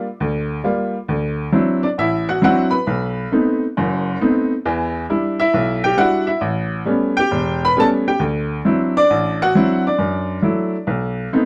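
The sound is dry and close, with the intimate feel of a 1970s studio, and the upright piano sits up front in a woody, brilliant tone. This is solo jazz in D mixolydian, swinging at 135 BPM in 4/4 with a sophisticated, playful mood. The piano carries everything on its own across the whole 11.5-second excerpt, which is cut from a longer piece, ranging from a deep E1 up to B5. Its harmony moves through rich jazz colors, from Gm7 to D9 and B7b9, then on through Em7 and A9 before returning to D9. Near the close, a Dadd9/F# leads into a final B7b9. The instrument is tuned slightly high, to A4 = 441 Hz.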